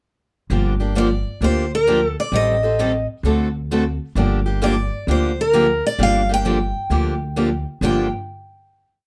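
Heard in a small, moderately reverberant room, this short, complete piece of bittersweet, swinging jazz manouche moves at 131 BPM in G minor, ending on a final chord at 7.8 seconds. Up front, a boxy parlour guitar with fresh strings picks short four-to-the-bar chords accented on two and four, while a full-bodied dreadnought with old strings adds a second rhythm part in the background and a dark, thumpy gut-string upright bass plays a woody two-beat root-and-fifth line, all starting at 0.5 seconds through Gm7, Am7b5 and D7 back to Gm7. From 1.0 seconds, a bright concert guitar sits up front with a motif-based melody built from song-like phrases.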